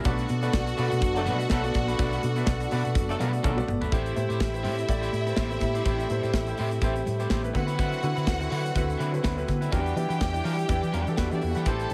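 A polished, roomy studio sound frames this glamorous, sultry disco excerpt in A dorian, moving at 124 BPM in 4/4 with a light sixteenth-note swing. A round, dark hollow-body bass and a tight-kicked acoustic drum kit with a medium-tuned snare anchor the groove, while high-tuned congas and a grainy egg shaker sit very quietly in the background. A clear, intimate baby grand piano with audible action noise and a twangy, slightly broken-up picked electric guitar fill out the accompaniment, and a lush, biting string section carries a second line with intense vibrato from a distance. Soft-attack French horns hold dark sustained chords behind everything, and a mellow pop-style horn section doubled in octaves adds echoing stabs only between 1.1 and 3.6 seconds. A piano fill and a drum fill lead into a new section at 3.9 seconds, where the harmony shifts from Bm7 to Am7 and then moves through D13 to Em9 under a plate-reverb sheen on the strings, piano, guitar and horns.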